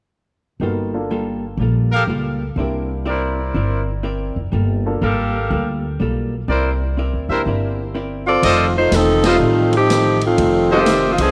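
Swinging and joyful, this big band swing excerpt opens with a clean, compressed hollow-body electric guitar, a woody upright piano in the background and a growly, thumpy pizzicato upright bass up front, before a brilliant trumpet section adds stabs from 1.9 seconds; a mellow, smooth-topped saxophone section takes the melody at 8.3 seconds, a big-band drum kit with a punchy kick joins just after, and the whole band hits an accent at 9.2 seconds in a light studio reverb.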